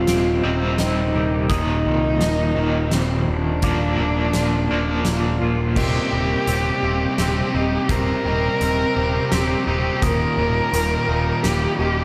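In a straight 3/4 at 84 BPM, this hopeful, cinematic post-rock excerpt sets an up-front, dark, woody bowed cello melody over a crunchy overdriven guitar riff that gives way at 5.8 seconds to a bright, distorted one for a build-up, with punchy fuzz bass, a fat-snared arena drum kit, a ringing vibraphone and a twangy guitar in arpeggios, and faint pedal steel chords with volume swells, all in a lush hall reverb.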